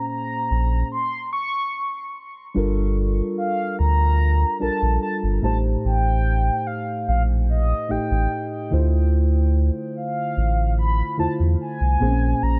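In a straight, unhurried 4/4, this contemporary R&B excerpt sets a late-night, longing mood. A warbling, vintage horn-like synth lead with chorus and tape echo carries the melody over muted, dark felt-like synth keys playing mostly ninth chords. A deep, sine-toned sub bass with octave enters up front at 0.5 s, and a stop at 0.9 s holds until 2.6 s, all set in a digital ambience with a soft, rolled-off top.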